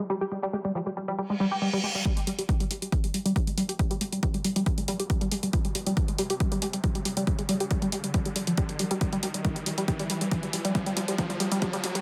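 Over a straight 4/4 pulse, this dark, hypnotic slice of driving peak-time techno opens on a tight, nasal sequenced synth riff, its detuned sawtooth tone pumping under sidechain and colored by chorus, tape echo and cassette grit as a filter sweep runs across it. A reverse cymbal and riser enter at 1.3 seconds, and at 2.1 seconds a punchy, overdriven analog kick arrives up front alongside an overdriven hi-hat with its own sidechain pumping, carrying a long build-up toward a drum fill at 9.0 seconds. The echo-heavy mix sits in a moderate plate reverb, trimmed at both ends of the spectrum by high-pass and low-pass filtering.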